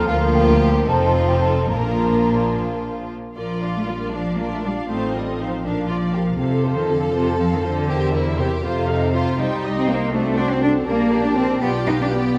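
An intimate, close cello section carries the bass in this urgent, restless classical-period movement for orchestra, set in 6/8 with a rubato feel and joined by an expressive double bass section. A mellow, airy flute section plays only until 2.5 s, alongside a smooth chamber violin second line and a lush viola accompaniment. A dark French horn section holds sustained chords in the background, a distant, intense violin section carries the melody from 0.1 s, and a wet scoring-stage reverb surrounds this passage cut from a longer piece.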